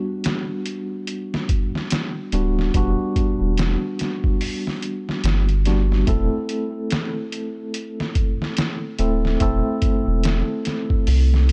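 A round, deep analog bass with a nasal edge and a filter pluck enters at 2.3 seconds and sits up front in this smoky, dark trip hop excerpt, swung lazily in 4/4. A clean tine electric piano, played through a combo amp with medium tremolo and tape echo, opens the clip on a rootless Em7 before moving to Am at 6.1 seconds. Sampler-style drums with a thumpy kick, medium-tuned snare and hi-hat arrive muffled, pitched down and compressed, roughened by overdrive and 12-bit grit, all set in a dark, warm digital ambience.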